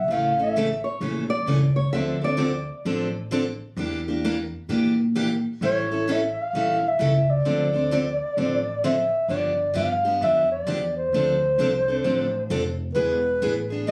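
A breathy, close-miked clarinet sits up front in this bittersweet, swinging stretch of acoustic jazz manouche in D minor at 130 BPM. It offers a brief whispered phrase at the start, then returns at 5.7 seconds to carry the melody with vibrato, subtone and scooped notes in an intimate solo voice. Underneath, a bright picked steel-string guitar keeps the swung accompaniment going, fresh strings and the odd finger squeak audible. A woody, growly pizzicato upright bass anchors the low end. Between 0.8 and 3.1 seconds a small, fingerpicked nylon-string guitar adds a gentle second line. The harmony moves from Dm7 and Em7b5 through A7 into a section built on G7, Dm7 and E7, all heard with light reverb and studio ambience in a compressed phone recording made in the room.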